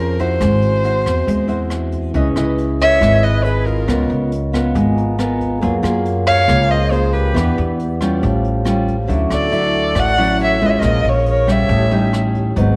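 Bossa nova at 138 BPM with a melancholic, smooth mood, cut from a longer piece, where a dark, bowed violin with vibrato, played sul tasto and up front, carries the melody over fingerpicked classical nylon-string guitar, woody pizzicato upright bass and a softly ringing vibraphone played with soft mallets and the motor off. A breathy, unsteady concert flute enters at 2.8 seconds with a tongued, straight-tone second line in the background, while a brushed drum kit with a boomy kick, hi-hat and rim click sits further back, and the vibraphone adds a fill at 4.3 seconds. Moderate spring reverb and small room ambience surround a harmony that moves through rich jazz chords such as C#m9, F#maj9, A7alt and Dmaj9.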